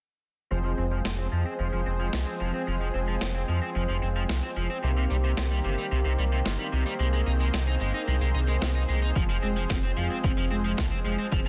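A deep, round analog bass sits up front and moves under a filter sweep, while a biting overdriven guitar riff, also filter-swept and carrying subtle chorus and tape echo, runs alongside a smooth, detuned supersaw pad that pumps with sidechain under sustained chords moving from Fm through Cm7 and Abadd9. An overdriven, sampler-style electronic snare keeps the straight synthwave pulse, and at 9.2 seconds a punchy, tape-warm kick arrives together with dark, clean fingered arpeggios from a mellow electric guitar roughened by 12-bit sampler grit and tape echo. The moody, nostalgic excerpt has a dense, heavily limited modern sound with light reverb.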